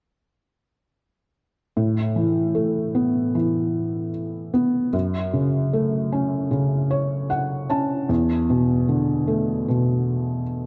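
A straight, unhurried 4/4 pulse carries this hopeful, heartfelt pop excerpt, where a felt-muted upright piano enters at 1.8 seconds to play soft, mellow accompaniment up front with audible action noise and light reverb, moving through Asus2, F#m and E7sus4 chords and adding a gentle fill from 6.5 to 8.1 seconds.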